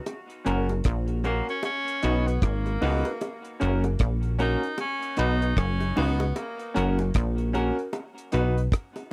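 Roots reggae with a sunny, warm mood, this short cut from a longer piece rocks gently over two alternating chords with a lightly swung sixteenth-note feel. A dark, smooth acoustic drum kit sits up front with a tight kick, hi-hat and rim click, joined by tight, high-tuned bongos struck with hard hands. A punchy, funky analog bass with a sawtooth edge and a fast, decaying filter pluck anchors the low end, also prominent in the mix. A woody, intimate upright piano plays stabs with its action noise audible, while a clean, hollow-bodied semi-hollow electric guitar fills out the accompaniment through a dub echo. The tenor saxophone enters at 1.3 seconds with a clear, pop-style solo touched with light vibrato and its own dub echo, sounding distant and roomy against an otherwise dry, close 1970s-style studio sound.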